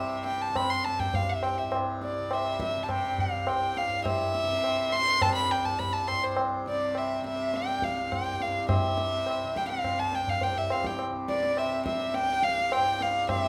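A dark, close violin and a buzzing, shimmering tanpura drone open this radiant, devotional Hindustani classical excerpt in raga bilaval on C, with low-tuned, ringing tabla joining at 0.3 seconds at a steady 104 BPM in 4/4. The solo violin sits up front, its airy sul tasto bowing, soft attack and light vibrato giving the melody an intimate, slightly boxy voice. The softly plucked tanpura hums beneath, and a moderate recital-hall reverb surrounds the trio.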